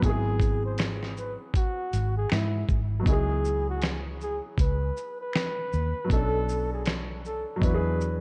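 Lo-fi hip hop at 79 BPM in 4/4, swung on the sixteenths, this melancholic, nostalgic excerpt is cut from a longer piece and moves through G#7alt, C#m11, Bm7 and E9. A breathy, mellow flugelhorn carries the melody in a jazz style, its scooped notes and vibrato trailed by a delay. Beneath it, an intimate upright piano with woody tone, short sustain and audible action noise plays the accompaniment through a cassette-tape coloring. A dark, foam-muted fingered electric bass sits up front with a round, punchy sound, alongside a gritty, compressed sampler-style drum kit of thumpy kick, medium-tuned snare, hi-hat and shaker, re-recorded in a small room. Barely audible finger snaps enter at 0.8 seconds and drop out at 7.1 seconds, all set in light studio reverb with an overall cassette-tape character.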